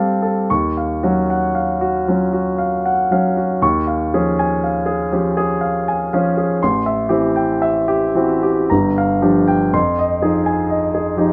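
A polished, up-front grand piano sits in a moderate studio reverb, its tone present and close while a short halo of room rounds off each chord. This is a brief fragment of impressionist classical solo piano, hazy and wistful in mood, moving at a slow 58 BPM in 3/4 with uneven beats and free rubato that keep the pulse softly elastic. The lone piano carries everything from 0.0 to 11.3 seconds, spanning a broad register from G1 up to Db6. Its harmony drifts through rich colors, opening on Ebm9 at 0.5 seconds, passing through C#add9/D# and Am7, then settling through Gm7 into Fm7 near the close. The result feels like a suspended, dreamy reflection, with warm extended chords lingering in the air.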